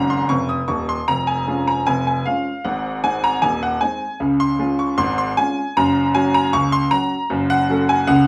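A woody, slightly detuned upright piano opens with a short fill before settling into a playful, cheerful solo ragtime passage in Db major at 77 BPM in a straight 2/4, its worn, up-front tone ringing with long sustain in a wet studio reverb as the harmony moves from Db/F through Ab and Db to a closing Gbm, in this 8.3-second fragment cut from a longer piece.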